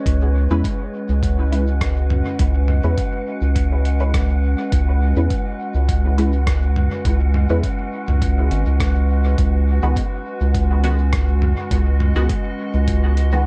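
This hazy, spacious ambient dub piece at 103 BPM opens with a warbling, nostalgic pad holding sustained chords, detuned and softened by chorus and its own reverb, while an airy, wind-like tuned noise texture breathes high above it. From 0.1 seconds a round, deep analog bass sits up front with a mellow, evolving tone, joined by a muffled, thumpy electronic kick and a lo-fi sampler-style kit of hi-hat, rim click and toms. The drums sound compressed, pitched down and tape-warm, as if re-recorded in a small room, and the kit is sent through dub echo. At 0.5 seconds a filtered dub chord stab enters, muted and plucky with a phaser, ensemble chorus and echo repeats. The harmony rests on C#m7 before shifting to G#m7 over C# at 9.4 seconds, in a dry but echo-heavy mix cut from a longer piece.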